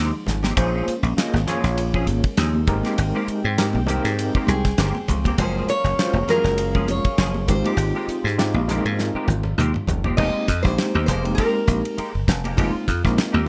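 Lightly reverberant and polished, this driving, intense electric jazz fusion cut in F minor moves at 100 BPM with a 16th-note swing, as a punchy, foam-muted thumbed slap bass and damped 70s drum kit with dark cymbals sit up front alongside ringing high-tuned congas, a barky overdriven tine electric piano with tremolo, clean stabs from a compressed semi-hollow electric guitar, and a shimmering chorused pulse-width pad that holds sustained chords in the background until 10.2 seconds, while a bright fingerpicked nylon-string guitar, finger squeak and all, carries the melody from 4.5 seconds over chords moving from Fm9 through Bbm9, Abmaj9 and Gbmaj9 to a closing Fm11.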